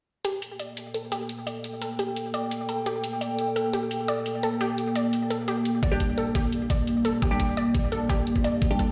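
A deep, wave-folded analog pad sits up front, holding sustained Gmadd9 chords with chorus and sidechain pumping across this futuristic, dark slice of technical drum and bass in G minor at 172 BPM. A warbling unison pluck spins arpeggios through a filter sweep and dub echo, while bright, tape-warm electronic hi-hats tick alongside. A knocking kick drum arrives at 5.8 seconds and a muted, mellow dub chord stab with phaser and lush chorus joins at 5.9 seconds, all heard through a big sound system in a bare stone room.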